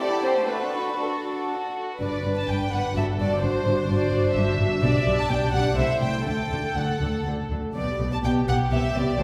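In a 3/4 that moves between 116 and 131 BPM with a flexible, rubato feel, this quick classical-period movement for string orchestra unfolds in G major with a cheerful, lively spirit. The first violins carry the melody up front in a pure, floating voice, bowed sul tasto with a soft attack, while a second violin section adds an intimate inner line touched with light vibrato. Beneath them, the cellos supply a rich bass from the background, and the violas enter at 0.5 seconds with a dark, woody, lush accompaniment. At 2.0 seconds the music moves into a new section as the double basses join, distant and dark with vibrato. The harmony passes through inversions of G and D before touching A minor and settling on a C major seventh, all heard from further back in a reverberant concert hall, and the passage is cut from a longer piece.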